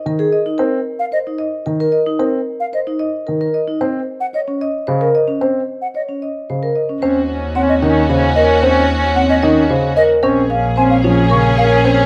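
A hypnotic, propulsive minimalist classical excerpt in 3/4 at 112 BPM opens with a marimba melody over a dark, vintage baby grand piano accompaniment, joined almost at once by ringing, metallic vibraphone arpeggios played with soft mallets. From 1.0 s an airy, hollow concert flute with vibrato and a crisp attack adds its own arpeggios, and at 7.0 s the harmony shifts to Ebm7 and then Bbm7 as a mellow soprano saxophone takes up a second line, lush bowed strings hold sustained chords, and a focused bowed double bass carries the bass. A moderate large-studio reverb surrounds the ensemble.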